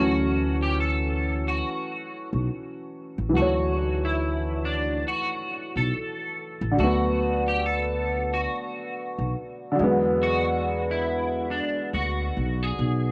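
A clean, bright electric guitar carries the melody, its picked lines sitting between D4 and A4 and coloured by ensemble chorus, a low-pass filter, cassette tape character and analog delay. This is a cosy, nostalgic hip hop piece at 70 BPM in 4/4 and D major, with a 16th-note swing that gives it a relaxed lilt. A worn, slightly detuned upright piano supplies the accompaniment, its warm tone softened by its own low-pass filter. Underneath, a woody pizzicato upright bass on steel strings holds the low end between A1 and E2. The guitar, piano and bass sit up front together throughout this 13.1-second cut from a longer piece, moving from Dmaj9 to Bm7 at 6.8 seconds and E9 at 9.8 seconds. Light reverb and small-room ambience frame a homemade cassette recording with an intimate, lived-in feel.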